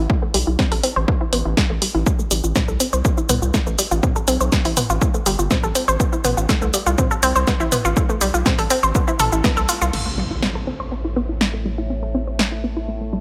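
A straight pulse drives this dramatic, hypnotic melodic techno excerpt: an overdriven, punchy electronic kick recorded in a large room sits beneath a tape-warm analog drum machine of hi-hat, shaker, snare, toms and crash cymbal, its percussion pumping against the kick. A bright, nasal analog pluck spins up-front arpeggios with chorus and delay under a filter sweep, over a deep, mellow analog bass that pumps in time, as the Am to rootless G9 harmony circles. After a band accent the kick drops out at 9.5 seconds, an electronic impact lands at 9.9 seconds, and a resonant drone with moving overtones and a slow attack enters at 10.6 seconds in a light reverb.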